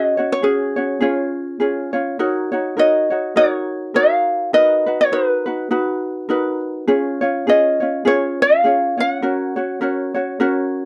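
Dreamy and languid, this brief Hawaiian passage is cut from a longer piece and drifts along with a gentle swing in 4/4. Two acoustic ukuleles, both fingerpicked and sitting up front, play together for the full 10.9 seconds. One carries the melody in a higher register, while the other supports it with a softer accompaniment beneath. Their mellow, light tone unfolds over a relaxed progression that opens on C#sus4 and moves through C#, D#m7, Bmaj7 and back to C# before settling on F#. The close, dry sound of a 1970s-style studio is touched by a moderate small-room reverb, giving the pair an intimate, unhurried presence.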